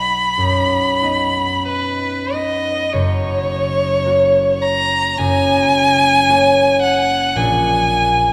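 Bathed in a wet church reverb, this serene fragment of a romantic classical duo flows with a free rubato, as one player's rich, focused violin sings the melody with vibrato up front while a mellow, ringing concert harp, fingerpicked and equally close, supplies the accompaniment, the music moving into a new section at 2.9 seconds.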